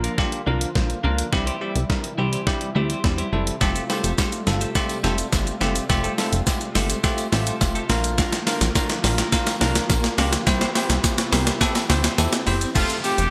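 A straight, steady dance-pop pulse drives this carefree, upbeat clip, cut from a longer piece, which is built almost entirely as a build-up with a drum fill running through it. Up front, a clean 12-bit digital drum machine with a thumpy kick, medium-tuned snare, hi-hat, shaker and crash cymbal carries a tape-warm, sampler-style character, heard as if re-recorded in a large room. Beneath it sits a punchy, funky analog bass with a plucky filtered attack and quick decay, pumping with sidechain compression, while a bell-like tine electric piano pumps likewise through its chords of Bb, C and Fadd9. A twangy, picked twelve-string electric guitar riff with subtle chorus hangs in the background, over a very quiet, smooth analog pad of detuned sawtooths with a moving notch. A faint riser and downlifter arrive at 3.0 seconds, a jingly, saturated tambourine joins at 3.6 seconds, and a clear horn section with light vibrato enters up front at 12.8 seconds just as the harmony lands on Fadd9. 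The whole mix has a bright, 1980s-style digital sheen, set in a moderate plate reverb.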